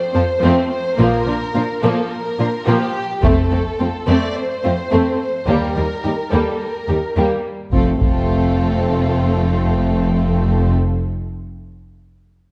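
A steady, straight 4/4 pulse at 107 BPM drives this majestic, adventurous cinematic orchestral cue in F mixolydian, cut from a longer piece. Violins carry the melody from the first moment, with a second violin line beneath and a rich viola section filling in the accompaniment, while clear, lightly vibrato cellos hold the low register and a focused double bass section enters at 1.0 seconds, sitting up front. Taiko drums struck with hard sticks break in twice, first at 3.2 seconds and again at 7.7 seconds, their vintage, band-limited thud adding weight to the sense of adventure. The harmony moves between F, Bb5 and Eb before returning to F as a new section opens. Bowed with vibrato, and with smooth tops in the violins and violas, the strings sit in a moderate scoring-stage reverb that gives the dark production its broad, cinematic scale.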